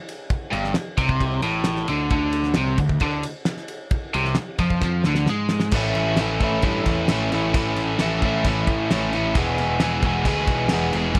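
Garage rock in a rowdy, raw mood at 132 BPM, this cut from a longer piece pairs a bright, double-tracked overdriven electric guitar riff up front with a fuzzed, overdriven picked bass and a cloth-damped, thuddy drum kit with dark cymbals, a fat snare and a tight kick. The drums start at 0.1 seconds and the guitar and bass join at 0.5 seconds. A drum fill at 4.8 seconds leads into a second section from 5.7 seconds, where the chords move from Gsus24 and Fm6/C to A and E, all in a dry, close sound.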